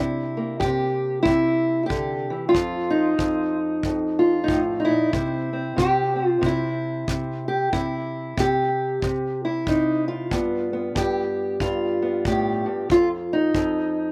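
A fingerpicked steel-string parlour guitar opens this soulful, laid-back acoustic country blues excerpt, its dark, boxy tone sitting up front with a slapback echo as it carries the melody over a swung 93 BPM in 4/4. A punchy acoustic kick drum with a brushed, small-room character enters at 0.6 seconds and sits well beneath the guitar. The harmony moves from C7 to F7, drops into a chordless stretch at 5.1 seconds, then returns through G7 and F7, all captured dry in an open-air setting.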